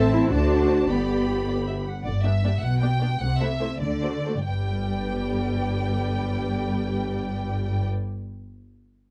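A dark, warm production with light reverb frames this lively, spirited snippet of a classical-period string orchestra movement in 6/8. A rich, focused violin section carries the melody over a soft-attacked, expressive second violin line, intense bowed violas, lush cellos and clear, even double basses, and the ensemble eases into a rubato slowdown from 1.5 to 4.5 seconds before settling on a G chord.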